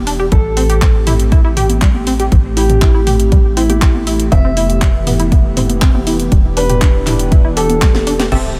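A punchy kick sits up front in a straight 120 BPM pulse, driving this dreamy progressive house excerpt in A minor, where a tape-toned house kit with cracking snare, hi-hat, handclaps and crash joins electronic toms and congas in the background, a tight, dark sawtooth sequencer bass, detuned arpeggios with digital delay, a smooth chorused analog pad under a filter sweep and a boxy, deep-toned concert grand piano melody move through Am7, Fmaj9#11 and Em7, before an airy, evolving supersaw stab and an electronic impact strike at 8.3 seconds.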